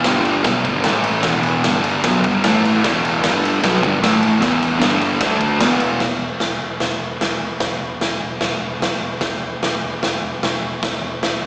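A dark, double-tracked fuzz guitar sits up front with a distorted, picked riff and slapback echo, cycling through G5, Gmaj7, A5 and E5 before it drops out at 6.0 seconds, leaving the rest of this swaggering, rowdy 150 BPM garage rock excerpt to the rhythm section. A raw acoustic drum kit hammers out hi-hat, ride, punchy kick and medium-tuned snare with a gritty, saturated edge and a pumping stone-room sound, while a round hollow-body short-scale bass, tube-saturated and amped, rumbles in the background until 11.5 seconds. The whole thing sounds like a live gig heard through the venue's PA, with recital hall reverb and a small-speaker character.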